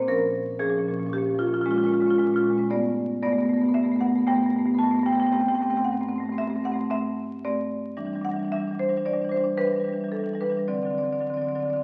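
Hypnotic and flowing, this brief contemporary classical excerpt for solo marimba moves in a rubato 5/4 around 114 BPM, its woody, dark rosewood bars struck with medium hard mallets sitting up front and spanning G2 to A5 through shifting harmonies from Db6/Bb and Bbm7 to Gadd9, C69/G, Em7 and D7, all bathed in a wet recital hall reverb and the crackle of a very old 78 rpm record.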